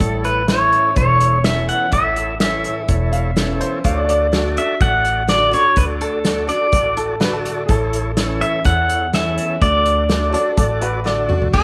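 Easygoing and sunny, this excerpt from a longer honky-tonk and classic country tune moves at a straight 125 BPM in D major, alternating between A and D chords. An up-front pedal steel guitar carries the melody with a bright, twangy, fingerpicked tone, its clean compressed sound shaped by slide and volume swells. Beneath it, a picked dreadnought acoustic guitar sits in the background with fresh, full-bodied strings, while a tonewheel organ adds a thick, lightly overdriven accompaniment through a slow rotary speaker. The pizzicato upright bass is woody and thumpy, and an unplugged drum kit played with bundle sticks gives a punchy kick and medium-tuned snare in a small-room sound, ending with a drum fill at 11.1 seconds. A clear, intimate upright piano enters at 3.1 seconds with a second line, its short sustain and audible action noise giving it a natural character, and a moderate spring reverb wraps the ensemble.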